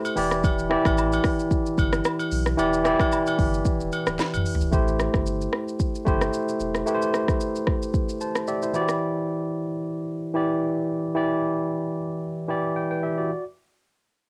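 A barky tine electric piano opens this sultry, hypnotic afrobeats excerpt in E minor, tuned to A4 = 436 Hz. Its clean tone comes through a combo amp, sits up front, and carries a cassette-tape grit. An electronic afro-pop drum kit joins almost at once at 112 BPM in 4/4 with a 55% sixteenth-note swing, pairing a deep kick and a sharp snare with smooth hats, rim clicks, shaker and toms. Agogo bells and woodblock add a lighter acoustic layer, with an egg-shaker and group-handclap character from a small room, until 4.4 seconds. Beneath them, a round, mellow sine sub bass holds sustained low notes with a fast attack. The harmony moves from Em7 to Am7 and back to Em7. After a drum fill leads into the second section, the kit drops out at 9.0 seconds, leaving the electric piano alone with its closing fill under light reverb and a homespun cassette sound until 13.4 seconds.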